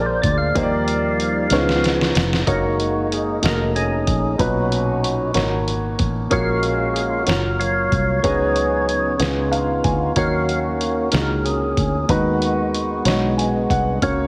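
Heavily compressed with a radio-like sound and a moderate concert hall reverb, this excerpt of slow, soulful and hopeful gospel moves at 62 BPM in 6/8 in F# major. A fat, lightly overdriven tonewheel organ with percussive attack and slow rotary speaker sits up front and carries the solo throughout. Woody upright piano, round foam-muted fingered electric bass and a muffled, pitched-down sampler-style drum kit with a thumpy kick support it, while a mellow French horn section holds very quiet chords until 2.5 s, a drum fill arrives just before that point and the piano adds fills around 9.2 s and 13.1 s.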